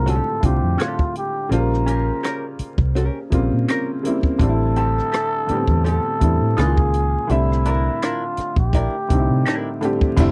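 Swinging sixteenths at a relaxed 83 BPM carry this sensual neo-soul R&B excerpt, where a breathy, raspy cup-muted trumpet sings the melody with light vibrato over clear grand piano chords, a round, foam-muted electric bass, a dark hollow-body jazz guitar line colored by wah, and a dry cocktail drum kit with a punchy kick, rim clicks and dark cymbals, while a faint tube shaker slips in at 10.2 seconds, all captured in a close 1970s-style studio sound with vinyl crackle.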